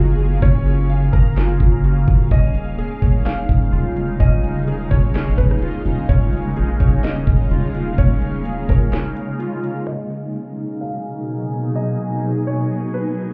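A knocking, up-front trap kit of kick, sharp snare, rim click and metallic hi-hats drives this melancholic, ethereal cloud-rap fragment in a half-time feel, over a deep, sine-toned 808 bass that drops away at 8.9 seconds for a short break. A shimmering, granular pad with chorus, phaser and reverb holds sustained chords, while detuned, warbling lo-fi synth keys arpeggiate through chorus and delay until 9.9 seconds, and a soft, felt-muted upright piano with audible action noise carries a filtered, delayed melody. The mix sounds muffled, as if heard through a wall, with a club reverb, and it closes on a filter sweep from 9.9 seconds.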